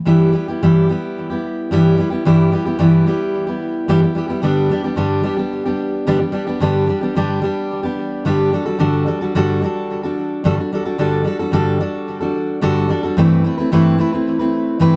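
A dark, warm studio sound with moderate reverb frames this carefree, sunny pop excerpt at 110 BPM in 4/4, where a solo fingerpicked steel-string acoustic guitar, full-bodied and jumbo with fresh strings, sits up front with delay, ranging from G2 to B4 across the full 15 seconds as it moves from Em/G through G and D/G to Amadd9/G at 13.2 seconds.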